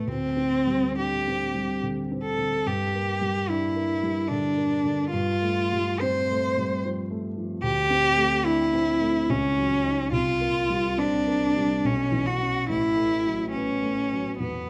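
Mysterious and hazy, this impressionist classical duo for cello and grand piano moves at about 71 BPM in 3/4, its beats uneven and pulled about with rubato. A single bowed cello carries the melody from start to finish, placed up front and close, with a rich, smooth tone, vibrato and an even delivery across its range from B3 to C5. Beneath it, a dark baby grand piano supplies the accompaniment, also up front, sounding mellow, worn and vintage as it reaches down to A1. The harmony drifts through suspended and added-note chords, opening on Csus2/D and settling on A69 near 12.7 seconds. A moderate reverb from a large studio surrounds the pair, adding a sense of space to this 14.7-second passage cut from a longer piece.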